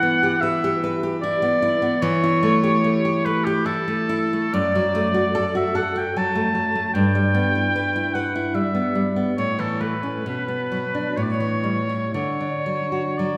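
A gently rubato three-beat lilt carries this serene, lyrical romantic duo, taken from a longer piece. A clear oboe with light vibrato and a soft attack sings the melody, while a bright, fingerpicked nylon-string guitar accompanies, its finger squeaks audible as the harmony moves through Em7 and A7/E toward a closing cadence on D at 12.1 seconds. The pair sits up front in a lush, churchlike reverb that gives the oboe a distant, roomy glow.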